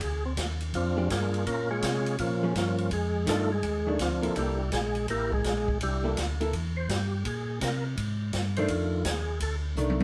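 A swinging 4/4 groove at 166 BPM drives this bluesy soul jazz organ trio fragment, where an up-front, lightly overdriven tonewheel organ with percussive bite and chorus vibrato takes the melody as a solo over a round, dark organ bass with key click, a natural acoustic drum kit with punchy kick, and a clean, hollow-body archtop guitar entering at 1.0 seconds to comp through changes like Bb13, F13 and C13 in a live-room sound, closing on a drum fill at 9.8 seconds.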